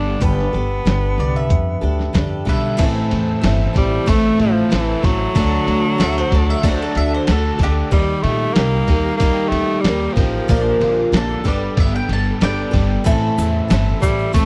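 This dry, close recording has a 1970s studio feel, with little reverb and an intimate presence. It is a nostalgic, hopeful stretch of folk rock and heartland rock in a straight 4/4 at 94 BPM, cut from a longer piece. A bright, punchy tenor saxophone carries the melody with vibrato and a smooth top. Beneath it, a shimmering, octave-doubled twelve-string acoustic guitar picks the accompaniment, and a woody pizzicato upright bass holds the low end. A double-tracked overdriven electric guitar plays a crunchy riff in the background, and a muffled, tape-warm sampler-style kit with a thumpy kick, re-recorded in a large room, drives the beat. A round mandolin adds a second line from 1.2 seconds, and a reedy tonewheel organ with a slow rotary speaker sustains very quiet chords from 2.8 seconds. The harmony moves from Gadd9 through Am, D, Eb and Bb, then back to Gadd9, and a grainy tube shaker enters at 13.1 seconds as it returns to Am.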